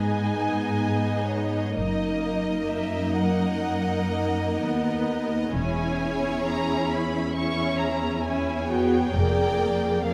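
Classical string orchestra in a slow, rubato romantic movement around 62-69 BPM, solemn and melancholic, cut from a longer piece. A dark, woody first violin section carries the melody high above a focused second violin line and smooth, even violas, while up-front cellos hold the bass and rich, expressive double basses join at 1.8 s. All sections play bowed with lush vibrato, set in a moderate scoring-stage reverb as the harmonies move from G#m toward a closing A#7/E#.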